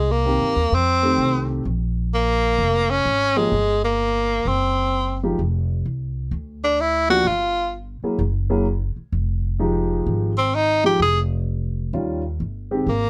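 Small-group swing and bop jazz in F minor, this late-night, cool excerpt moves at 128 BPM in 4/4 with a swing on the eighth notes. A bright, punchy tenor saxophone carries the melody up front with vibrato and a forceful solo voice, while a woody, thumpy pizzicato upright bass holds down the low end and a concert grand piano with deep bass fills in the accompaniment from 0.3 seconds. Light reverb lends a touch of room to the chord changes, which wander from Cm7 and F7 through Gb9 and Fm9 before landing on Eb9 at 11.9 seconds.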